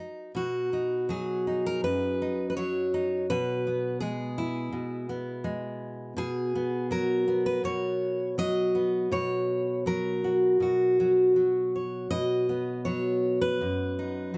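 Folk fingerstyle in a warm, nostalgic mood, this excerpt features a lone fingerpicked steel-string jumbo acoustic guitar, full-bodied and up front with audible finger squeak, drifting rubato over chords ringing against a low B pedal in a dark production with moderate studio reverb.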